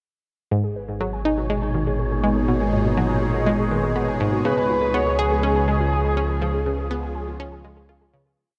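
Bathed in a huge, wet ambient reverb, this brief, mysterious piece of sequencer-driven space music moves at 122 BPM in G# dorian, opening at 0.5 seconds with a bright, nasal analog pluck cycling a 16-step sequence up front, a mellow, warbling lo-fi pluck looping 12-step arpeggios that drift against the bar in the background, and a deep sine sub bass holding the root. An evolving wavetable pad with phaser morphs through slowly shifting chords from G#madd9 to C#, while an airy, wind-like noise texture holds a dark high C#5 far behind. At 4.5 seconds a shimmering, retro pulse-width lead with vibrato and chorus sings arching motifs, continuing as everything fades out from 5.8 seconds.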